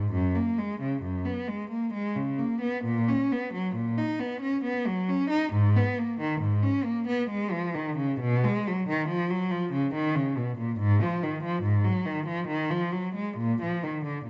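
A single bowed cello sits up front with a clear, focused tone and vibrato, playing alone from start to finish across the 14.3 seconds of this passage cut from a longer baroque-style suite movement. The mood is grave and solemn, moving in F# major at about 68 BPM in 3/4 with rubato and uneven beats, tuned to A4 = 438 Hz. A moderate recital-hall reverb surrounds the cello, and the overall production leans dark.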